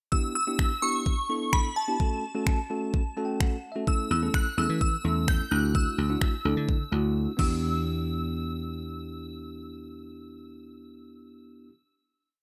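A shimmering, dreamy FM bell carries a motif-based melody from the first moment. Its detuned, full-bodied tone sits up front with ensemble chorus and tape echo, while a bell-like tine electric piano plays syncopated, close-voiced chords with sidechain pumping. This is an energetic, driving dance-pop piece at 128 BPM in E dorian, tuned slightly low, and a layered electronic pop kit with a knocking kick, finger snaps and crash cymbal drives a four-on-the-floor beat through the verse. The electric piano adds a fill at 2.9 seconds, and a dry, foam-muted slap bass enters at 4.1 seconds with a bright off-beat line that also pumps to the sidechain. The harmony moves from Em7 through F#m, A/E and Dadd9. A brief silent gap at 7.2 seconds clears the way for a final hit on Em7 that rings out to the end. The light reverb and rough home-demo mix keep the sound close and direct.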